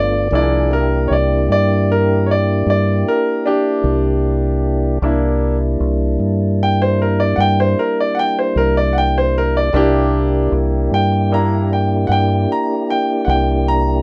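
A soulful, swaggering slow blues in a straight 12/8 feel, this short excerpt, cut from a longer piece, centres on a bright concert grand piano taking the solo throughout its 14 seconds, its brilliant top and deep bass sitting up front. A tonewheel organ holds sustained chords beneath, lightly overdriven with key click and a slow rotary speaker, while a round, punchy fingered electric bass adds a dark, direct foundation, all over a C9 harmony. The sound is dry, with the rough feel of a home demo mix.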